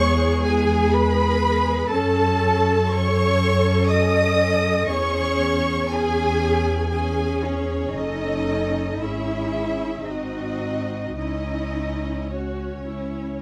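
Solemn and elegiac, this slow romantic string-orchestra passage in C# minor moves in a rubato 3/4 at 52-62 BPM, with a focused, vibrato-rich violin section carrying the melody over a lush second violin line set in the background, bowed violas in accompaniment, a warm yet distant cello section and an up-front double bass section anchoring the bass, all captured with close, detailed microphones and light reverb as the harmony settles onto C#m at 11.2 seconds.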